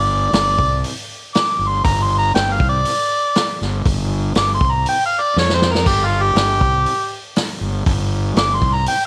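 An overdriven harmonica with a smooth top, light vibrato and scooped notes plays a jazz-inflected solo over a growly, fuzz-soaked fingered electric bass and a vintage drum kit with dark cymbals and a tight kick that fills at 5.4 seconds, all in a brooding, smoky blues rock and southern rock power-trio passage at 119 BPM in G minor, set in light reverb.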